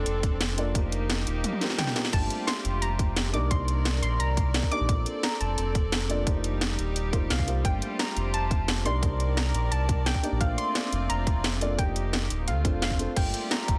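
A soft, round pluck melody with chorus and dub echo opens this rolling, lush liquid drum and bass excerpt at 174 BPM in G minor together with mellow felt-muted upright piano through delay, a rich chamber string section pumping under sidechain, and a deep sine sub bass up front, while an overdriven kit with a cracking snare and bright hats and a tight electronic kick enter within moments, with a drum fill at 1.4 seconds and a very quiet electronic swell at 1.7 seconds, all over a dense, heavily limited master with light reverb and a cycling Bbmaj7, F9sus4, Gm11, Cm9 progression.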